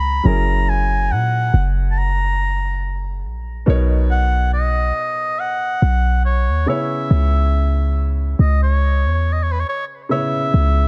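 A slow 70 BPM pulse in 4/4 with a light swing on the sixteenths sets a moody, late-night contemporary R&B groove in C# dorian, moving through F#7, Bmaj9 and C#m7 across this 10.9-second fragment. A smooth-topped, classical-style oboe carries the solo melody up front through an analog delay, over natural-sounding baby grand piano chords and a deep, boomy 808-style bass with a sine core, a noise layer and a fast, decaying attack. The small room ambience and echo-heavy mix lend the whole a warm, mellow haze.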